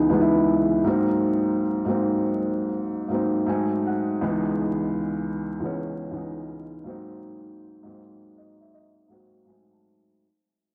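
Reflective and melancholic, this short hip hop fragment at 80 BPM in 4/4 swings its sixteenths gently, with a felt-muted upright piano playing alone and up front, its mellow, intimate tone softened further by a low-pass filter and a filter sweep across the whole 10.2 seconds. The harmony rocks between C#m7 and G#7, darkening to G#7b9 at the close of each pass. A moderate spring reverb, cassette grain and vinyl crackle give it a homemade feel as the whole passage fades out.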